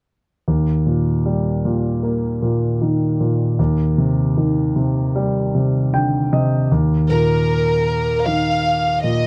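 Tender and heartfelt, this short pop fragment, cut from a longer piece, opens on a present, polished grand piano carrying the accompaniment from Eb major harmony into a soft Cmadd9/Eb colour, with a piano fill arriving at 5.5 seconds. At 7.1 seconds a chamber violin section takes up the melody, its bowed tone intimate with light vibrato, a soft sul tasto attack and a touch of slapback echo, as the harmony settles on Ebsus2. The close, dry 1970s-style studio sound keeps both parts up front beneath a light reverb.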